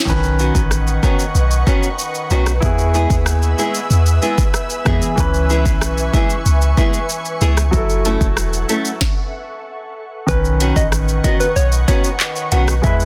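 Dancehall at 94 BPM with a bouncy, sultry feel, built on a deep, boomy 808-style bass and an up-front afro-pop kit of handclaps, rim clicks, shaker, crisp hats and a sharp, softly clipped snare, while a warm grand piano and fingerpicked nylon-string guitar arpeggios move through Badd9, E, C#m7 and F#m7 under an ethereal, detuned pad with ensemble chorus and sidechain pumping, before a stop at 9.0 seconds gives way at 10.3 seconds to a round, warbling FM synth lead with chorus and delay, all in a dense, heavily limited mix cut from a longer piece.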